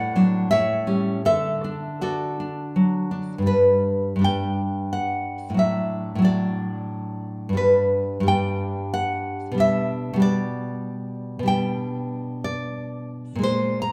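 A solo nylon-string guitar opens a nostalgic, tender romantic piece, fingerpicked up front with a full-bodied, deep classical tone and finger squeak audible on the strings. It moves in 3/4 with a rubato feel, the tempo breathing between 78 and 97 BPM, and the first phrase rests in D major, passing from D/A through A7 to D. At 3.5 seconds the music shifts toward G major for a new section, its harmony moving from G to D/A, back to G and on to G/B. The guitar ranges from G2 up to Bb5, and a moderate recital-hall reverb with a 1.8-second decay gives it a sense of space. This excerpt is cut from a longer piece and stops at 13.9 seconds.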